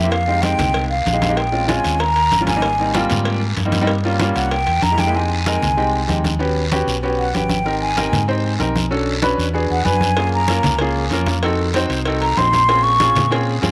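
Lively and danceable, this Afro-Cuban jazz passage moves at 191 BPM in a straight 4/4, starting in Ab major and shifting to F minor at 5.1 seconds. A breathy, hollow concert flute carries the melody as a solo throughout, its soft attack and straight tone given a slapback echo, while an intimate, up-front grand piano with audible action noise supplies the chords underneath. A round, punchy fingered electric bass anchors the low end, and in the background ringing congas struck with hard hands sit close and dry beside a raspy guiro. A tight, high-tuned cowbell plays until 5.1 seconds, drops out, and returns at 10.2 seconds. The harmony is rich in extended and altered chords such as Fm9, Eb7alt and Gbmaj9, and a moderate spring reverb gives the mix a sense of space in this cut from a longer piece.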